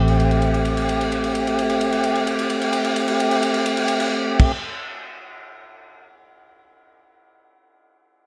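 In a slow 12/8 feel at 49 BPM, this brooding, soulful A minor blues fragment opens with a fat, up-front tonewheel organ holding an Am7 chord through a slow rotary speaker with key click and vibrato, while a round, punchy, foam-muted electric bass sits on a low A; a moment later a drum fill enters on a dry, gritty soul kit of dark crash and ride cymbals and tight kick. Organ and bass stop at 4.5 seconds, leaving the drums alone until 6.1 seconds in a dark production with moderate reverb.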